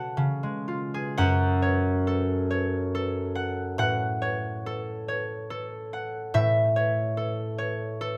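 Mysterious and wistful, this brief classical excerpt features a solo concert harp, fingerpicked and ringing up front with a warm tone in light reverb, moving freely in triple time from C# into F# minor harmonies that drift toward A major by 6.3 seconds.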